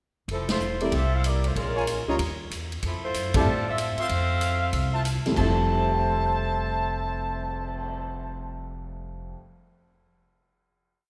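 Big band swing at 190 BPM in F major, joyful and brassy, this short complete piece sets a warm saxophone section's vibrato-laden call phrases in four-part block voicing over a woody pizzicato upright bass in two-feel, a natural, big-room drum kit with punchy kick and stick-played ride, and a grand piano comping in syncopated rootless voicings, while a clear, close-miked trumpet section adds syncopated drop2 stabs from 1.8 s and the band punches out accents before a final chord arrives at 5.4 s in a moderate concert-hall reverb.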